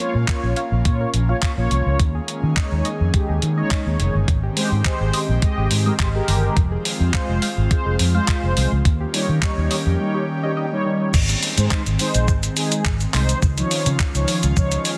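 Dance-pop at 105 BPM, energetic and driving, built on a crisp, thumpy 8-bit drum machine with kick, hi-hat, shaker, handclaps and crash cymbal, up front beside a dark, foam-muted fingered electric bass, while mellow brassy synth brass and an airy, breathy pad breathe with sidechain pumping over chords moving from Bbm through Eb7sus4, Abmaj7, Fm and Eb7. A soft, round pluck traces chorused, delayed arpeggios in the background until 11.0 s, and as the harmony shifts to Ab and Dbadd9 a hollow group handclap slips in, barely audible, at 11.7 s. The sound is dry and close, with a dense, heavily limited modern master, in this fragment cut from a longer piece.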